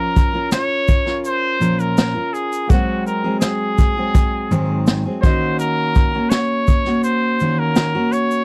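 Acoustic pop with a wistful, tender mood, cut from a longer piece. A clear, up-front trumpet carries the melody with light vibrato and scooped notes over a full-bodied fingerpicked jumbo steel-string guitar and a very quiet, polished baby grand piano, while a vintage brush kit with punchy kick, shaker and a rolled-off top joins at 0.2 s. The sound is dry and close, like a 1970s studio recording, moving through Bbm, Ab7 and Ebm7.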